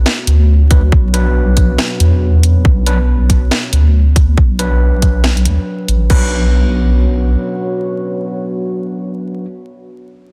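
A deep, saturated wobble bass sits up front in this dark, brooding deep dubstep excerpt at 139 BPM in B minor, with a swung, half-time feel, joined by a tight electronic kick and a tape-warm garage kit with a cracking snare, hi-hat and crash until 6.2 s, while gritty, overdriven electric piano stabs pass through a low-pass filter and dub echo, and a moody, warbling sawtooth pad holds sustained chords under a filter sweep through 6.1 s, set in a dense, heavily limited master with light reverb and vinyl crackle.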